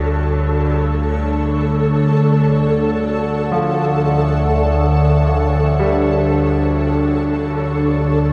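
An up-front, wave-folded drone with moving overtones and chorus anchors this ominous, desolate dark ambient excerpt in free time and D harmonic minor, while a blurred, cloudy granular pad fades in with sustained chords, a grainy, flickering texture hovers on A4, and a brilliant concert grand piano with audible action noise plays arpeggios in the background through a diffuse delay, all within a huge, wet reverb.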